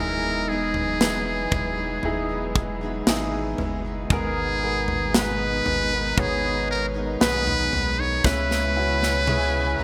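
A buzzy, metal-muted trumpet carries the tender melody up front with vibrato and delay in this heartfelt 58 BPM pop ballad excerpt, over a clear concert grand piano with lush chorus, background picked steel-string acoustic guitar arpeggios with chorus and delay, sustained bowed strings, a round sub bass, and an acoustic drum kit with a tight kick and gated reverb entering at 0.7 seconds and a fill from 8.2 seconds, as the chords move from Emaj7 to G#madd9 to C#m7, a distant violin section joins at 9.3 seconds, and the production has a bright 1980s-style digital sheen.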